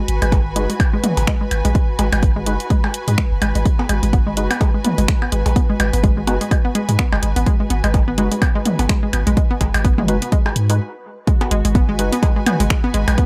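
A punchy, overdriven electronic kick sits up front in this sparse, clinical minimal techno cut, taken from a longer piece and running at 126 BPM in 4/4 with a 57% swing on the sixteenths, in G# minor over a G#m7 chord. A deep sine sub bass with a pitch-drop attack pumps against the kick, while a hollow, bouncy square-wave pluck riff, detuned and chorused with dub echo, also pumps through the mix. A house kit adds overdriven finger snaps and bright hats, and electronic percussion blips and toms carry a tape-warm, small-room character. An organ-like percussive stab with ensemble chorus and dub echo sounds from 0.6 to 12.1 seconds, and a distant, biting symphonic string section with light vibrato hovers in the background, pumping as well. A very quiet, bubbling sawtooth texture with random resonant filter steps runs under a filter sweep on a synth arpeggio until it stops at 10.8 seconds, and after a brief pause the track drops at 11.3 seconds, all set in a dark production with moderate studio reverb.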